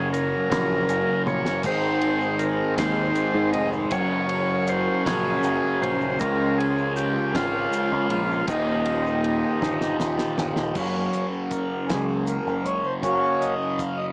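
In a slow, straight 6/8 at 53 BPM counted in dotted quarters, this hazy, kaleidoscopic psychedelic rock excerpt sets a buzzy vintage combo organ melody, up front with light vibrato and analog delay, over a double-tracked fuzz guitar riff with phaser, a growling, punchy overdriven picked bass, reedy, breathing harmonium chords, a damped 70s drum kit with fat snare, tight kick and a fill at 9.6 s, and a grainy egg shaker in the background, all moving through Gb, Ab, Db6 and Ebadd9 until the organ stops at 10.0 s and the nasal harmonium takes a solo from 10.8 s, the whole mix soaked in echo-chamber reverb with a small-speaker sound.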